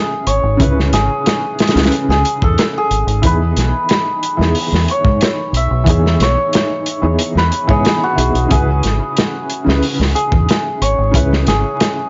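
A small room tinged with vinyl crackle and a dulled top end frames this hypnotic, smoky trip hop excerpt in C# minor, moving at 91 BPM in a straight 4/4. A shimmering, ringing santur carries the melody up front, its hammered notes trailing dub echo. Beneath it, a felt-muted upright piano gives soft, mellow, boxy accompaniment with tremolo and audible action noise. From 0.3 seconds a round, punchy deep dub fingered electric bass and a crunchy breakbeat kit of kick, snare and hi-hat join in, the drums saturated and gritty with a rolled-off top. The harmony shifts from C#m7 to Emaj7 at 3.2 seconds and returns to C#m7 at 8.5 seconds.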